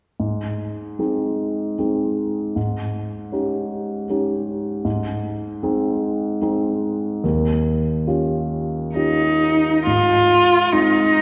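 Serene and warm, this romantic classical excerpt in A-flat major drifts in a rubato 3/4 at 63-79 BPM, with a dark, mellow grand piano, its action noise audible, carrying the accompaniment up close until a rich, bowed cello enters at 9.0 seconds with expressive vibrato and portamento, both bathed in the long, wet reverb of a concert hall.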